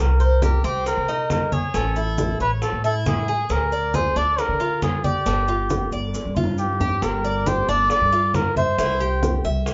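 Sultry and warm, this Cuban son and guajira excerpt at 136 BPM in 4/4 sets a veiled, cup-muted trumpet up front singing a soft, jazz-style solo melody with light vibrato over thumpy, woody pizzicato upright bass on gut strings, joined at 0.2 seconds by metallic picked arpeggios from a Cuban tres with double strings alongside close, hard-handed, low-tuned congas and grainy maracas in the background, with tight, high-tuned bongos sounding distant, a drum fill from 6.1 to 7.0 seconds, and the band playing live in a small, wet room with a dusky top end, tuned to A4 = 436 Hz.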